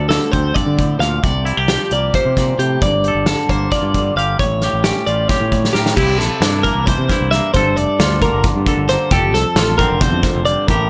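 Math rock and midwest emo in D minor, this restless, intricate cut from a longer piece runs in 7/8 at 266 BPM counted in eighths, with a clean, compressed twelve-string electric guitar up front spinning high arpeggios through digital delay over a twangy, scooped, fingered electric guitar accompaniment. A growling, bright fingered bass with overdrive holds the low end while a loose, roomy indie drum kit with dark cymbals, a tight kick and a medium-tuned snare drives the odd metre. The harmony moves through Dm7, C9sus4, Gm9 and A7b9b13 before a drum fill from 5.6 s opens a second section at 6.0 s on C9, Gm9 and Dm7/F, all set in a light reverb.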